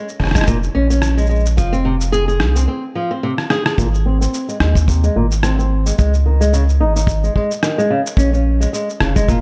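Fingerpicked and dark, a flamenco guitar sits up front playing arpeggios through a low-pass filter and digital delay over Bbm7 and Fm, moving to Ab and Dbsus2, with a filter sweep on it from 3.8 seconds. This delicate folktronica excerpt from a longer piece moves at 109 BPM in 4/4 with a light 16th-note swing. It is carried by a deep, round sine sub bass, a tight, smooth brushed kick with a rolled-off top, and a muffled, pitched-down sampled shaker and rim click, with a break at 2.7 seconds and a drum fill leading into the second pass, inside a small room and a warm production.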